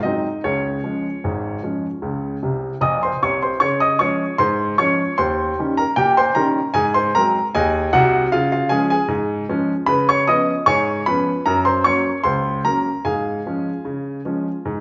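A natural-sounding, up-front baby grand piano with short sustain plays solo in this lively, jaunty ragtime excerpt in Db major at 76 BPM in a straight 2/4, spanning low bass to high treble, adding a fill at 2.4 seconds, and moving through Db, Eb7, Ab7, Db7 and Gb before settling on Db/Ab, all set in a large studio's wet reverb with the top end rolled off.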